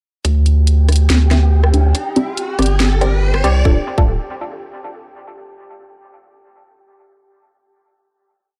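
A dry, gritty cassette-tape sound frames this short, cavernous and dark deep dubstep piece in D minor, tuned to A4 = 442 Hz, moving at 141 BPM in a half-time 4/4 feel. A thick, saturated sine sub bass sits up front with chopped, sustained phrases, while a tight, overdriven electronic kick and a layered garage kit of closed hi-hat, rim click and cracking snare carry the half-time beat, both drum parts touched with overdrive and studio reverb. A muted, detuned dub chord stab of sawtooth and square waves with a sub octave plays off-beat chords as one shape moved in parallel, its filter sweeping through the build while phaser and dub echo colour it. Alongside, a breathy, wind-like tuned noise layer holds a high G4 with slow attack and its own reverb, and an electronic riser enters at 1.3 seconds to push the transition. The chords pass from Dsus2 to Gsus4 before the build resolves onto a final D minor chord at 3.7 seconds.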